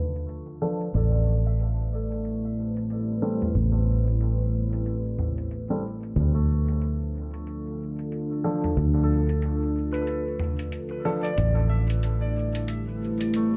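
A dark, hazy mix with light studio reverb carries this spacious ambient dub fragment at 92 BPM in A minor with a swung 16th-note feel, where a deep, warbling, detuned pad holds sustained chords up front under a filter sweep, a round, foam-muted fingered electric bass anchors the low end, a ringing concert harp plays filtered arpeggios with dub echo, a muffled, pitched-down lo-fi sampler-style drum kit brings hi-hat and toms in a small room from 0.2 seconds, and a mellow, woody upright piano adds echoing stabs from 0.6 to 11.3 seconds as the chords move between Dm and Am7.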